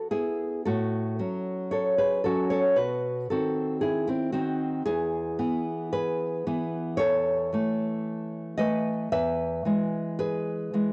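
Set in a slow 2/4 at 56 BPM with a loose, rubato feel, this short romantic excerpt for solo classical guitar unfolds in E major and carries a tender, nostalgic mood. A single nylon-string guitar, fingerpicked and up front, plays throughout the full 10.9 seconds, ranging from E2 up to E5 with a warm acoustic tone. The harmony moves gently from E through F#m/A to B, returns to E, passes through A/E and settles back on E at 9.1 seconds. The guitar carries a cassette-tape character, and the home recording sits in a small room with light reverb. Tuned slightly high at A4 = 441 Hz, the fragment is cut from a longer piece.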